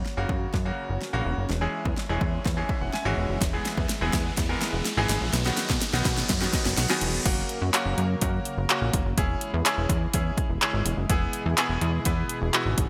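An up-front, overdriven deep house drum kit with a punchy kick and fat snare drives this bittersweet 125 BPM dance-pop section, cut from a longer piece, as a funky, plucky analog bass, a brilliant grand piano and a shimmering chorused pulse-width pad all pump together over F#, C#m/E, E and B, while a background riser and drum fill build until the drop at 7.3 seconds, all set in a lush hall reverb with a bright 1980s-style digital sheen.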